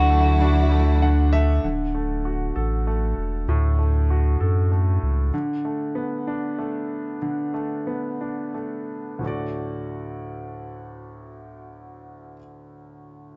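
A brilliant, polished concert grand piano carries this tender, swaying 6/8 pop fragment throughout, opening beneath a brief twangy twelve-string electric guitar line with spring reverb and delay, lush bowed strings with vibrato and a round, mellow sub bass, adding a fill at 0.7 seconds before the sub bass drops away at 5.3 seconds and the music slows until 9.2 seconds.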